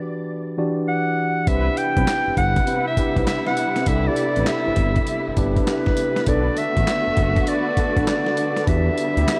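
New jack swing R&B with a punchy, confident mood rides a swung sixteenth-note groove in this short excerpt, opening on clarinet and tine electric piano alone before the full band arrives at 1.5 seconds. The breathy clarinet carries the melody up front, clear and jazz-styled with vibrato and scooped notes, while the mellow, clean electric piano supplies the accompaniment beneath it. From 1.5 seconds a dusty, sampler-style drum kit sits forward in the mix, compressed and gritty with a thumpy kick, medium-tuned snare, hi-hat, handclaps and tambourine, joined by a smooth sawtooth-and-triangle synth bass with vibrato. A lush bowed string section holds sustained chords with portamento and expressive vibrato, and a very quiet, dark synth brass adds detuned, chorused stabs with a filter sweep. The harmony moves from Em7 to Cmaj7, then Bm7 and back to Em7, all set in a dreamy mix soaked in church reverb.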